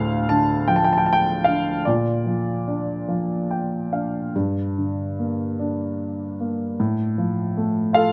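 A worn, up-front baby grand plays this reflective, melancholic classical fragment alone in a slow, rubato 6/8 at 47-53 BPM in dotted quarters, moving from D minor through B-flat and G minor to F over A, with a brief fill from 3.1 to 4.3 seconds and long sustain ringing through light reverb and close, detailed miking.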